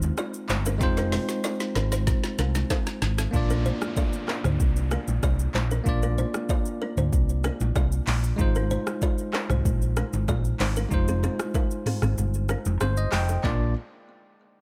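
Afrobeats with a sunny, joyful lift, built on a round, punchy hollow-body electric bass and an up-front electronic drum kit with a deep kick and woody snare, while a bell-like tine electric piano accompanies over Ab6, Fm7 and Bb chords, a woody kalimba riff rings through delay, bongos and congas sit in the background, a downlifter sweeps through from 3.3 to 8.4 seconds, and the kick drops out at 12.2 seconds, shortly before the electric piano plays a fill.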